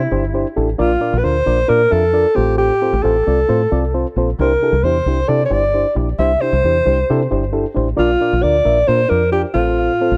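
A straight, uptempo 4/4 groove drives this uplifting slice of 1960s-style soul, cut from a longer piece and built on a repeating Cadd9, Bb and F/A progression. Up front, a mellow alto saxophone carries the jazz-style solo melody with vibrato and scooped notes, its smooth top bathed in plate reverb and tape echo, while a deep, dark fingered electric bass, round, foam-muted and amped, holds the low end. A reedy, clean electric piano, heard through its built-in speakers with plate reverb, fills in the accompaniment from 0.1 seconds, set in a lightly reverberant room.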